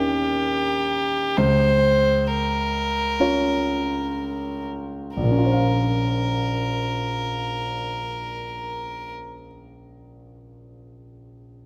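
A rich, floating solo violin, bowed sul tasto with a soft attack and a pure tone, opens this longing, reflective neoclassical excerpt alongside a warm, boxy concert grand piano whose deep bass anchors the accompaniment; the two slow through the first 5.2 seconds over Eb7 and Db6 before settling onto Bbmadd9, and once the violin stops at 9.1 seconds the piano carries on alone until 11.7 seconds, with both instruments up front in a moderate concert hall reverb.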